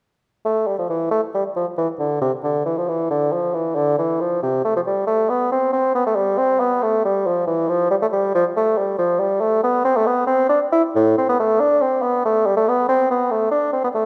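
Classical baroque-style fantasia for unaccompanied bassoon, solemn and flowing in 12/8 with free rubato timing. The mellow solo bassoon sits up front, playing from 0.5 to 14.1 seconds in a classical style with light vibrato and soft attacks, ranging from low A2 to E4. A moderate scoring-stage reverb lends the line a spacious glow in this short excerpt cut from a longer piece.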